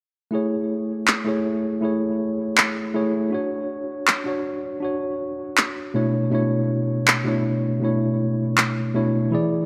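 A worn tine electric piano opens this bright, lush future bass excerpt at 0.3 seconds, sitting up front with a light overdrive and a dub echo trailing behind it. Slightly out of tune and heard as if through built-in speakers, it carries the accompaniment over a chord progression that moves from Amaj7 to Dmaj7 and then Bm11 in A major. Electronic handclaps arrive at 1.1 seconds, produced and overdriven, placed just as far forward and washed in studio reverb. The tempo is 160 BPM in 4/4 with a half-time feel and a gentle swing on the sixteenths. The claps drop out at 8.7 seconds, leaving the piano to carry the passage through a moderate hall reverb with a digital sheen.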